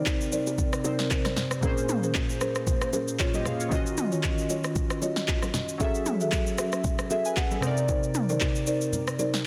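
A dense, heavily limited modern master with light reverb and digital ambience frames this soulful, hypnotic amapiano fragment, cut from a longer piece, moving at 115 BPM in 4/4 with a 55% swing on the sixteenths. Glassy digital keys sit up front as the accompaniment, their sine-like tone carrying a fast attack, decaying notes, a filter sweep and a chorus shimmer across a range from Bb2 to Ab5. A folk marimba played with soft mallets adds woody, rustic stabs on hardwood bars, its dry, round and mellow voice trailed by tape echo. The deep house drum kit is electronic, layered and produced, sitting up front with a deep kick, punchy snare, handclaps, rim click, shaker and toms, while bright acoustic bongos and congas, played with soft hands in a small room, stay in the background. The harmony drifts through Cm9, Bbm9, Ebm9 and Gbm9 before returning to Cm9, and the kick drops out from 8.9 seconds to the close at 9.5 seconds.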